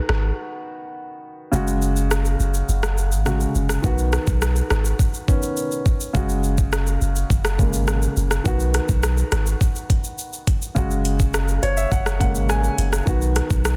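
A sunny, summery dancehall groove at 104 BPM in B major opens on a baby grand piano with a natural, warm tone, sitting up front and pulsing with sidechain pumping as it alternates between B and F#sus2 chords. Almost at once a deep sub bass and an electronic island pop drum kit join in, and the opening stretch up to 3.8 seconds serves as a break. The bass is punchy and sine-like, with a pitch-drop attack and a fast, sustained body, placed close and prominent. The produced kit brings a knocking kick, metallic hi-hats, rim clicks and shaker, re-recorded in a large room yet still up front. Near the end, from 11.3 to 13.1 seconds, the piano plays a fill, all of it framed by digital ambience and a dense, heavily limited modern master in this short cut from a longer piece.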